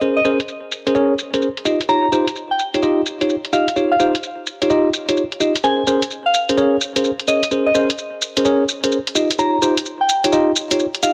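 Light reverb wraps this soulful, skippy two-step UK garage cut at 128 BPM in Bb dorian, where a bright, bell-like tine electric piano plays up-front stabs with delay over Bbm9 and Eb9 chords, layered electronic shaker and hi-hat drums with bright hats and low-pass-filtered hats, snare and percussion swing on the sixteenths, and from 0.2 seconds a gentle, warbling vintage FM synth bell carries the melody through chorus, phaser and delay.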